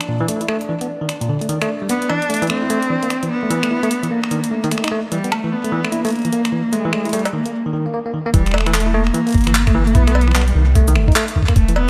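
IDM in E minor at 149 BPM with a 16th-note swing, this eerie, glitchy excerpt opens with gritty, pitched-up jungle sampler drums of cabasa, cowbell, finger snaps, handclaps and hi-hat, a bell-like tine electric piano playing arpeggios through digital delay and shimmer reverb, and a pulsing gated texture with chorus sitting in the background until 7.5 seconds. A clear, focused bowed cello with vibrato carries the melody from 1.9 seconds over shifting chords such as Cmaj7sus2, A#maj7 and E7#9. After a short break, a thumpy, compressed electronic kick and a round, deep analog bass enter together at 8.3 seconds, planting the low end under Emadd11 and Gmadd9 harmonies.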